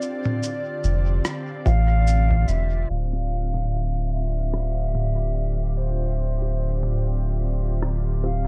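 An echo-heavy, low-pass-filtered mix with little reverb frames this meditative, spacious ambient dub excerpt, where a pure, woody flute with vibrato and lifted highs floats over a calm, detuned organ-like pad bathed in chorus and its own reverb. A muffled, compressed lo-fi drum kit of cabasa, rim click and toms carries a dub echo and a swung sixteenth-note feel, while a deep, round sub bass sits up front from 0.8 s and a very quiet, thumpy electronic kick appears briefly at 1.7 s. In the background, a muted, resonant, wave-folded chord stab with phaser and echo also enters at 1.7 s, and from 2.9 s filter sweeps move across the pad and the stab.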